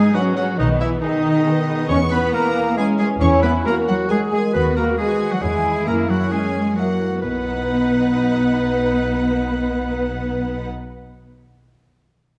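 A whimsical, mischievous film cue in B major opens with strings, winds, horns and harp together, moving in a lilting 3/4 at 135 BPM, cut from a longer piece. A focused violin section carries the melody with vibrato, while a second, more even violin section, a clear oboe with light vibrato and an airy, hollow flute ensemble set back in the mix add their own lines. Lush violas fill in the accompaniment, a mellow, loosely played French horn section holds sustained chords, and a ringing, fingerpicked harp spins arpeggios in the background until 11.1 seconds. Soft-attacked cellos with expressive portamento anchor the bass, joined at 0.6 seconds by a bowed double bass section with a smooth top. The harmony drifts from G#m through C#m7 and F#7 before settling on B at 7.2 seconds, and scoring-stage reverb gives the dark production a magical sheen.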